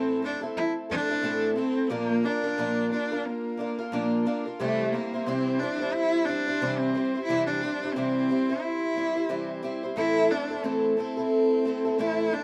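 Lightly reverberant and up front, this brief, sunny, carefree pop passage at 89 BPM in C mixolydian, with a swung sixteenth feel, pairs a close, expressive bowed cello melody, rich with vibrato and portamento, against a shimmering, octave-doubled, boxy parlour twelve-string acoustic guitar picking out Am, Bb and C chords.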